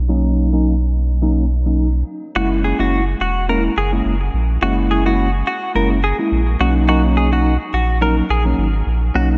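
A dreamy, reverb-soaked mix with a huge ambient tail and a low-pass filter gives this short cut from a longer afrobeats piece a soft, hazy glow, and a filter sweep colors its opening 2.4 seconds. A round, dark sub bass sits deep and up front from the very start, its sine-like tone sustained with a fast attack. A mellow tine electric piano joins almost at once with clean, direct-sounding accompaniment, thickened by ensemble chorus, moving from Bmaj7 to F#7 and back. At 2.4 seconds a bright, twangy clean electric guitar enters with a compressed, picked melody, recorded direct and dressed in analog chorus and delay. The 16th-note swing gives the groove a gentle lilt, and the mood is romantic and joyful.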